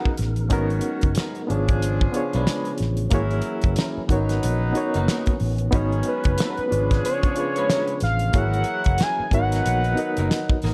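A soulful, sultry neo-soul and R&B groove at 92 BPM opens on a reedy, clean electric piano with fast tremolo, a slightly broken-up, compressed electric guitar with analog chorus, a very quiet, lightly overdriven tonewheel organ with key click and slow rotary, and distant, roomy horn stabs. A dry 70s drum kit with a fat snare and tight kick and a dark, round, punchy fretless bass join almost at once, both up front, on swung 16ths under chords moving from Bmaj7 through G#m11, C#7b9/G# and F#7/G#. A fat, detuned sawtooth analog lead with a sub octave and vibrato sounds only for a moment at the start, then returns at 6.1 seconds to carry the melody, all set in light studio reverb.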